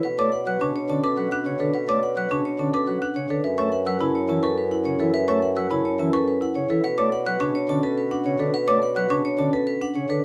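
Meditative and hypnotic, this short cut from a longer minimalist classical piece in triple metre circles through Bm7 and F#7sus4 chords. A metallic, ringing vibraphone struck with hard mallets carries the melody up front with medium motor vibrato, while a woody rosewood marimba and a dry, percussive, mellow xylophone played with soft rubber mallets spin arpeggios above a full chamber organ principal chorus with audible chiff and a warm bassoon bass with light vibrato. The xylophone drops out at 9.3 seconds, and a moderate large-studio reverb surrounds the ensemble.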